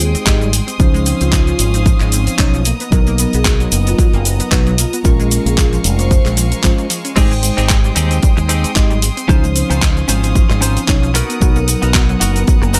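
Groovy and feel-good, this nu-disco piece moves at 113 BPM with a swung sixteenth feel, led by a punchy, up-front electronic kick and a tape-tinged house drum kit with handclaps, hi-hat, shaker and crash, joined by a very quiet tube shaker. A bright, envelope-filtered fingered electric bass with tube saturation and sidechain pumping sits alongside a mellow tine electric piano, rich bowed chamber violins holding sustained chords, and a round, detuned analog pluck playing arpeggios through chorus and delay. A ringing soft-mallet vibraphone with gritty sampler character carries the melody until 6.2 seconds, and a clean, twangy direct-recorded electric guitar riff with dub echo enters at 7.2 seconds over chords moving from Abmaj7 through Dbmaj9, Bmaj7 and Bbm7.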